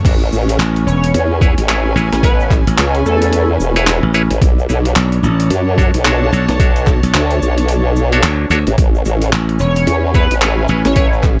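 Glitch hop at 110 BPM with a swung 16th-note feel, funky and playful over Amaj9 and Bm9, built on a gritty, pitched-down, thumpy electronic kick, an overdriven boom bap sampler kit with a high-tuned snare, handclaps, hi-hat and crash, a grainy tube shaker in the background, a detuned formant-sweep wobble bass with chorus, and a growly, punchy slap bass entering at 0.6 s, while a pumping bright clav with delay adds twangy, nasal stabs from 1.4 s, a distant, smooth chamber string section pulses beneath, and an edgy, tearing sync lead with chorus, vibrato and delay appears briefly near the start and returns at 9.6 s, all in a light reverb.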